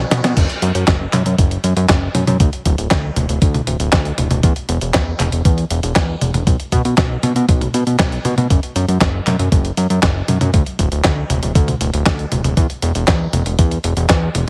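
A quick drum fill opens this bittersweet, melodramatic italo disco excerpt as a fat, saturated analog bass enters at once, its detuned sawtooth and square-wave tone shaped by a filter pluck and held up front. From 0.4 seconds a thumpy electronic kick drives the straight 118 BPM pulse in 4/4 alongside a gritty, tape-warm sampler-style kit of snare, handclaps, hi-hat, toms and crash cymbal, both carrying small-room ambience. Light reverb sits over a heavily compressed, radio-like sound with lossy artefacts, tuned slightly sharp to A4 = 441 Hz.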